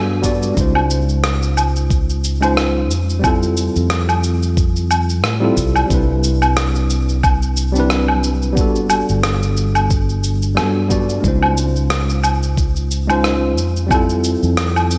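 A worn, slightly out-of-tune tine electric piano sits up front with digital delay and slapback echo, voicing mellow chords from Gmaj9 through Dbmaj9, Fmaj9 and Cmaj9 in this blissful, smooth sunset chillout excerpt at 90 BPM with a swung 16th feel, over a bright, growly fingered electric bass, a gritty, thumpy sampled kick that stops at 14.1 s and a compressed, close shaker, woodblock and rim click, the mix set in a lush 2.2-second hall reverb for a big arena sound.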